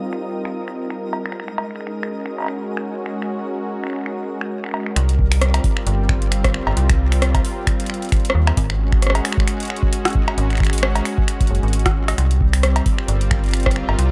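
A swung 133 BPM IDM groove, cut from a longer piece, runs on a booming analog drum machine whose cowbell, finger snaps, metallic hats and rim clicks sit behind low-pass filtering and tape echo, with a deep electronic kick joining at 5.2 seconds. A detuned, warbling sawtooth pad holds chorus-soaked chords from Cm7 through Ab5 under a filter sweep, while a sparkling granular texture with octave-up shimmer drifts in the background until 5.0 seconds. There a mellow, fast-attack FM bass steps up front over a third-less C7 and F#add9, giving the glitchy, cerebral track an echo-heavy yet dry feel.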